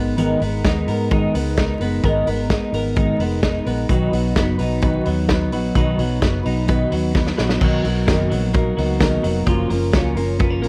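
A bright, twangy twelve-string electric guitar rings out arpeggios over a full-bodied fingerpicked steel-string acoustic, a dark, round muted electric bass and a loose, punchy indie drum kit that joins at 0.2 seconds and plays a fill just before the shift to a Bmaj7 at 7.6 seconds, giving this nostalgic, youthful jangly indie pop excerpt a dry, close 1970s studio sound flecked with vinyl crackle.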